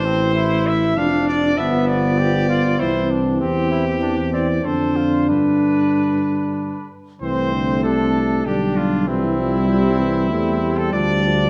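Classical brass quintet music in a stately, warm triple metre, cut from a longer piece, in which two clear trumpets carry the melody and a second line, the lead sounding distant and roomy with light vibrato, above a mellow French horn and trombone in the background, the trombone also bearing a faint vibrato, while a dark, smooth-topped tuba with gentle vibrato sits up front on the bass, each of the five playing throughout the 11.5 seconds in a reverberant recital hall.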